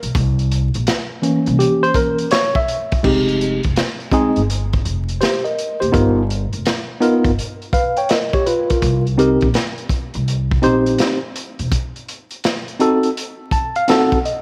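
This smoky, nocturnal jazz-hop fragment moves at 83 BPM in F minor with a swung 16th-note feel. A crunchy, saturated breakbeat kit with dark cymbals and a tight kick sits up front beside a woody pizzicato upright bass, which drops out at 11.7 s. A worn, slightly out-of-tune tine electric piano enters at 1.2 s, voicing chords from C7b9 through Fm9, G7alt and Cm7 to Cdim7 before a closing fill at 13.2 s, all under light reverb and a bed of vinyl crackle.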